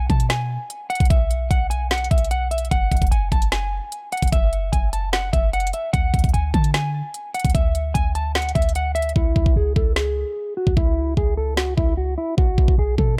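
A half-time trap beat at 149 BPM drives this brooding, melancholic hip hop excerpt in C# phrygian, with an up-front electronic kit of knocking kick, woody snare and crisp hi-hats that drop out from 9.2 seconds. A clean, sine-like 808 bass sits deep and boomy beneath, its fast attack decaying into dark low tones. Up front, a mellow, fingered electric guitar carries the melody through a low-pass filter and digital delay over chords moving from B5 through Eadd9 and D to C#m before returning to B5, all in a dry sound.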